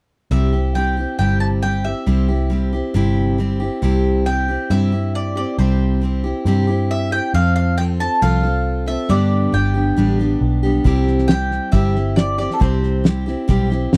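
Honky-tonk and classic country at 137 BPM in 4/4 with a straight, sunny, nostalgic feel in C major, moving from C through F and G. A bright, woody mandolin carries the melody over a full-bodied steel-string acoustic guitar and a round, foam-muted vintage electric bass, with both guitar and bass sitting up front. A cloth-damped, thuddy drum kit with a fat snare and tight kick enters at 10.9 seconds in this dry, close 1970s-style studio recording cut from a longer piece.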